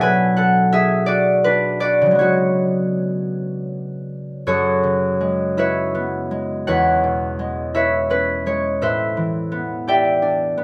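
A solo concert harp opens on a Bm7 chord, its bright, ringing tone sitting up front in a moderate stone-room reverb. This is a mysterious, wistful classical piece in F# minor and 6/8, moving at a slow, rubato pulse of roughly 52-58 beats per minute counted in dotted quarters. The fingerpicked strings span from a deep E2 up to B5, moving through C#7sus4 before the music shifts into a new section at 4.5 seconds. There the harmony turns to F#m11 and E69, then darkens onto Am11 at 8.8 seconds, lending an unresolved, searching colour. Cut from a longer piece, the passage ends at 10.6 seconds, the acoustic harp still resonating in the stone space.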